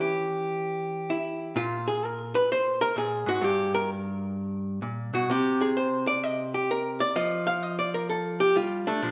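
A miked and amplified archtop guitar plays alone from the very start, a relaxed, swinging solo jazz passage with lilting swung eighths in 4/4. The picked hollow-body tone sits dark, clean and compressed, placed up front in a church or concert hall whose moderate reverb lends a soft halo. Over its 9.1 seconds the harmony drifts from Em6 through Absus2 and Gm to a brief chordless stretch before settling on F, a short slice cut from a longer piece.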